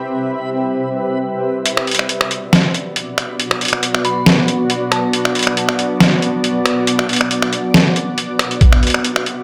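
Half-time at 138 BPM with a light 16th-note swing, this dark, meditative deep dubstep fragment in B phrygian opens on a blurred granular cloud pad with 12-bit sampler grit and a dreamy reversed texture over a filter sweep, then brings in a gritty, pitched-down trip hop drum kit of finger snaps, hi-hat and overdriven snare at 1.7 s for a build-up over Bm and C, with an eerie, inharmonic detuned synth bell drifting through chorus, phaser and dub echo in the background and a thumpy overdriven kick landing at 8.6 s, all set in an echo-heavy plate-reverb mix.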